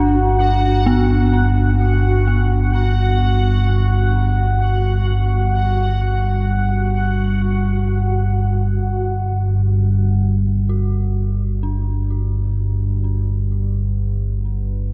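A vast, echoing cathedral reverb surrounds this desolate, dark ambient drone excerpt in G major, which drifts in free time over a deep, ominous rumbling drone held up front from G1 to G2 while a filter sweep moves through it until 8.8 seconds. Above it, an eerie, inharmonic synth bell with chorus and delay spins warbling arpeggios between B3 and F#4, alongside a bubbling texture of resonant, random filter steps that stops at 8.8 seconds. A moody, full-bodied analog pad fades in from the background with sustained chords, becoming audible at 11.3 seconds.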